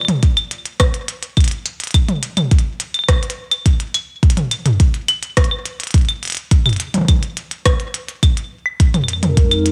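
Eerie and intricate, this IDM excerpt moves at 105 BPM in a straight 4/4, built on a glitchy electronic kit of claves, clicky hats, rim clicks and toms set up front over a deep kick drum, both touched with studio reverb. Near the close, at 9.0 seconds, a hollow, flute-like pad with a slow attack and detuned, chorused shimmer sustains an Abadd9/F chord. The dry, lo-fi cassette sound lends the whole cut a homemade intimacy.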